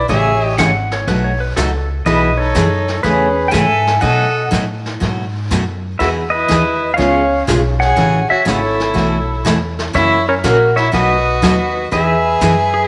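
Set in a moderate echo-chamber reverb, this playful, swinging western swing excerpt puts a twangy, up-front pedal steel guitar with slapback echo and volume swells on the melody, while a dark, bowed fiddle with light vibrato carries a second line, a clean lap steel adds brief slide phrases around 0.6 seconds and again at 12.7 seconds, a full-bodied picked acoustic guitar with finger squeak fills the accompaniment, a thumpy pizzicato upright bass anchors the low end, and a vintage brush drum kit with a punchy kick and rolled-off top swings softly underneath through rich chords like Amaj9 and F#m9.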